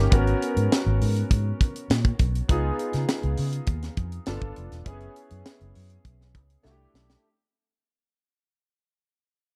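Glossy and upbeat, this brief excerpt of polished 1980s jazz-funk pop moves at 101 BPM in a straight 4/4, with a tight acoustic funk drum kit up front (high-tuned snare, tight kick, hi-hat) and a round, foam-muted fingered electric bass sitting just as close, dark and amped. A clear, intimate grand piano with audible action noise and analog chorus voices extended chords such as G#m11, C#7 and G9 before settling on C69. The whole clip fades out within a small, dark room sound, with a drum fill arriving at 6.6 seconds.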